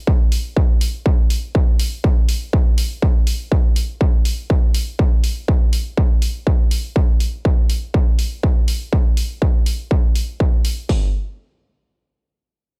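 Techno at 122 BPM in a straight 4/4, with a dark, melancholic mood, cut from a longer piece. An up-front electronic drum kit carries the groove from 0.1 s to 11.0 s, pairing a distorted kick with warm hi-hats that sound re-recorded in a large room. A second, quieter electronic hi-hat layer adds shadowy hats with a small-room character, all in a dry, close mix.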